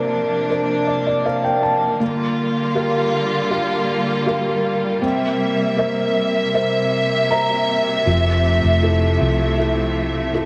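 A wet echo-chamber reverb surrounds this hopeful, heartfelt pop excerpt in F major at 79 BPM, moving from Bbadd9 through Gm7 and C7 to Fmaj7. A felt-muted upright piano, intimate and mellow with audible action noise, plays soft accompaniment and short fills, while an up-front studio string section holds bowed chords with vibrato and a smooth top. At 8.1 seconds a round, punchy hollow-body electric bass enters beneath them.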